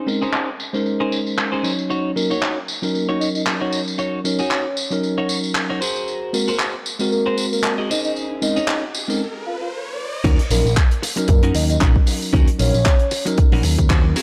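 Sensual and sleek, this swung nu-disco excerpt opens with a clean, compressed electric guitar riff with lush chorus over a bell-like tine electric piano pumping against the sidechain and a damped 70s kit whose dark cymbals, handclaps and tambourine sound rolled-off, joined at 2.2 seconds by a round, octave-layered synth lead with tremolo and analog delay, while a riser leads through a brief break into a drop at 10.2 seconds where a punchy, up-front electronic kick and a bright, envelope-filtered picked bass arrive, all in a dry, gritty hardware recording with light reverb.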